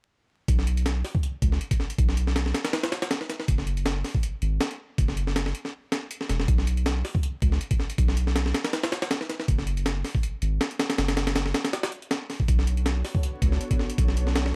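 Drum and bass with a jungle edge, this dark, frenetic passage is cut from a longer piece and sits entirely in its drop from 0.5 seconds onward. A breakbeat sampler-style drum kit drives it, with a thumpy kick, a high-tuned snare and hi-hat, all sounding compressed and gritty at their natural pitch, placed up front. Beneath the break, a soft dub sub bass holds the low end, deep and round, with a triangle and square wave character, a fast attack and sustained notes, also sitting up front. Both parts run together until 14.5 seconds. The sound is dry, with little reverb, and a layer of vinyl crackle lends the whole passage a worn, dusty surface.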